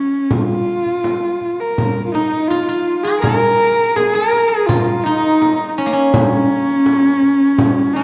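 Solemn and windswept, this short excerpt cut from a longer piece of Mongolian folk music moves at a steady 82 BPM in straight 4/4, set in the Bb yu mode. A clear horsehead fiddle carries the melody from the first moment, its bowed horsehair strings giving a nasal, husky, focused tone with vibrato and portamento, sitting up front with a slapback echo. A small, bright frame drum enters at 0.3 seconds, sounding distant, as if placed in a large room. At 2.1 seconds a steel-string zither adds a second line, played with fingerpicks and ringing with a silvery shimmer. The whole is bathed in the reverb of a recital hall, within a dark, warm production that frames the fiddle's boxy character.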